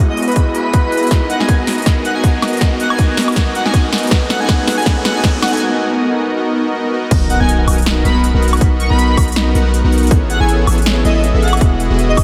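An overdriven, hard-clipped electronic kick sits up front in this playful, bright future bass excerpt, driving a half-time 4/4 groove at 160 BPM with a light 16th-note swing in B major. Beneath a filter-swept, sidechain-pumped soft supersaw riff, mellow and detuned with tape echo, a background chamber string section holds soft, sul tasto chords while a riser climbs through the build-up, and the big-room dance kit adds a punchy snare, crisp hats, crash and woodblock, with a drum fill leading to a brief break at 5.6 seconds. An airy, dreamy lead carries the melody on top, shimmering with chorus, vibrato and a diffuse ambient delay. The drop lands at 7.1 seconds with an impact and a deep, long sine 808 bass that pumps against the kick. Chords move from Emaj9 through Bmaj7 and Amaj9, and the whole mix is soaked in a cathedral-like reverb that gives it a floating, dreamy haze.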